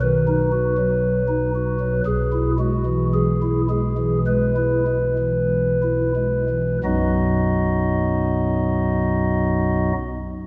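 A solo pipe organ on a soft, hollow stopped-flute stop, voiced in a mellow baroque manner and placed up front, plays a serene, majestic classical chorale in straight 4/4 that slows down over its first 6.8 seconds, moving from B to E/B and back to B, with the organ falling silent at 9.9 seconds inside a wet church reverb heard from further back in the room, all cut from a longer piece.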